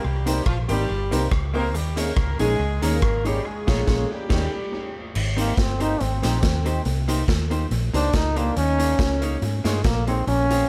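Set in a lightly reverberant room, this bouncy, upbeat ska fragment at 141 BPM with a gentle swing rides on a saturated, punchy garage drum kit with a pumping stone-room sound and tape echo, alongside a round, foam-muted fingered electric bass up front and a clean, compressed hollow-body archtop guitar. A tight, mellow horn section in octave doubling carries the opening melody with tape echo and plate reverb, while a woody, slightly detuned upright piano with audible action noise adds echoed stabs, and the band hits an accent from 3.5 seconds. From 5.2 seconds a bright, up-front trombone takes a solo with light vibrato over chords moving from Abmaj7 back to Cm7 and Eb7sus4.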